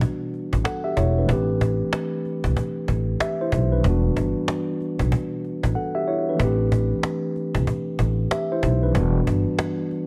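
A swung boom-bap hip-hop groove at 94 BPM in 4/4 drives this short, tough and dark piece in A minor, cut from a longer track. A woody, close and dry cajon carries the beat with hard hands and faint snares, sitting up front before dropping out briefly between 5.8 and 6.4 seconds. A growly pizzicato upright bass with steel strings enters at 0.5 seconds and holds down the low end, also placed up front. Over them, a mellow, clean tine electric piano, filtered at both ends of its range, lays down the accompaniment with direct, warm chords. The harmony moves between Em9 and Am9, and light studio reverb gives the close, intimate mix a touch of space.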